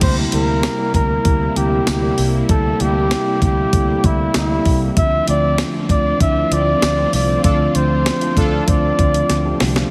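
A warm flugelhorn carries the melody up front from the opening moment, its vibrato-tinged tone bathed in shimmer reverb and slapback echo, over a nostalgic, moody 1980s-style pop groove in a straight 4/4. Beneath it, a mellow tine electric piano sounding through its built-in speakers supplies the accompaniment, sharing the same shimmer and slapback treatment. Further back, a string machine voiced as violas holds sustained chords with a soft attack and a warbling, evolving ensemble chorus. A foam-muted, round and punchy fingered electric bass anchors the low end, while a clean 12-bit drum machine with a thumpy kick, medium-tuned snare, hi-hat, tambourine and crash sits prominently in the mix. At 7.4 seconds the band hits an accent, joined by very quiet, fat and nasal analog synth brass stabs with a filter sweep, and a drum fill starts at 9.3 seconds as this excerpt from a longer piece closes in a big, arena-like hall ambience.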